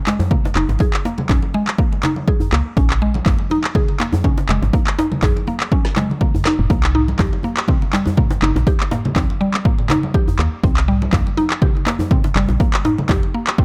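This hypnotic, driving afro house excerpt opens with a round, mallet-like FM synth pluck playing arpeggios, dressed in chorus and dub echo and pumping against the beat, alongside an electronic afro-pop drum kit with handclaps, toms and a woody snare. A close, acoustic djembe with metal rattles enters with them, and bright, thin-skinned congas played with hard hands sit vintage and band-limited in the background. A punchy, overdriven electronic kick arrives just after, layered and up front as the loudest part. At 0.6 s a soft, dark FM bass with a fast attack and decaying notes joins in the low register, also pumping. A drum fill leads into a harmonic shift from Bbm to C7(no3) at 6.7 s, and the swung groove stays dry and close throughout.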